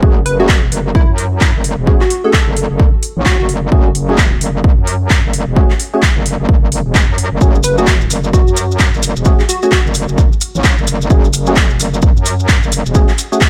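A saturated, metallic wobble bass with chorus and sidechain pumping drives this swaggering, gritty bass house excerpt at 130 BPM in F# minor, over a punchy, up-front kick and a tape-warm house kit of handclaps and hi-hats, while hollow, chorused organ stabs with tape echo sit on an F#madd9 chord, a catchy, detuned square-wave unison lead with a filter sweep appears at 0.3 and again at 7.6 seconds, and grainy, close maracas join at 7.4 seconds in a dry mix.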